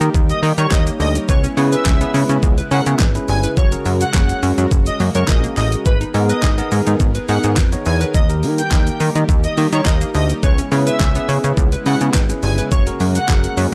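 An energetic, driving dance-pop excerpt at 105 BPM opens with an overdriven pop drum kit of knocking kick, fat snare, handclaps, hi-hat and shaker up front beside a punchy, funky plucky analog bass and a barky tine electric piano, both pumping with sidechain, over a very quiet, smooth supersaw pad, while from 0.3 seconds an airy, dreamy lead with chorus and vibrato carries the melody and from 0.4 seconds a hollow, bouncy square pluck arpeggiates in the background through chorus and tape echo, the whole dry and gritty with transformer saturation over chords moving from D# through C#m7, F#add9 and G#madd9.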